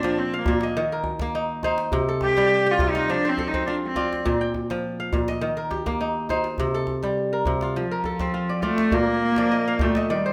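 A bowed cello, played by a single performer, opens this short excerpt from a longer West African traditional piece, its rich, nasal tone carrying a light vibrato and sitting up front with an earthy, somewhat distant character. Kora arpeggios ring out alongside it from the start, bright and crisp under the fingers, while a medium-tuned djembe adds quieter percussion with a small-room feel. The cello holds a solo role through the first section until 6.6 seconds, when the music moves into a second passage. The mood is flowing and hypnotic at 103 BPM in 4/4, with a gentle swing on the sixteenths and harmony circling around Bb, Eb and F. A kora fill arrives at 9.4 seconds near the close, and a moderate recital-hall reverb surrounds the ensemble.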